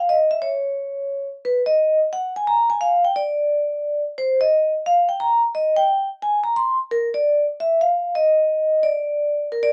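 Sophisticated and warm, this short swung jazz passage features a solo vibraphone played with medium mallets, its metallic, ringing tone carrying a slow motor vibrato and a vintage, band-limited character, sitting up front under close, detailed microphones and light reverb for about 9.7 seconds.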